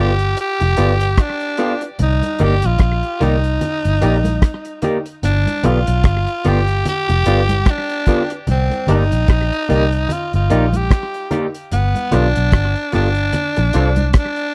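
A breathy, raspy tenor saxophone with tape echo carries the melody from the opening moment over a barky tine electric piano, lightly overdriven with phaser, slightly broken-up guitar stabs through a small old amp, and a round, foam-muted fingered bass, with a cloth-damped, thuddy drum kit of hi-hat, tight kick and rim click joining at 0.2 seconds. This bittersweet, smooth lovers rock reggae excerpt moves at 74 BPM in C dorian with a swung sixteenth feel, cycling through G7 and Cm7 before reaching Bbmaj7 at 13.3 seconds. Soft-handed, ringing congas enter in the background at 2.0 seconds, and the whole piece has a dry, close 1970s-style studio sound with the drums, bass and sax up front.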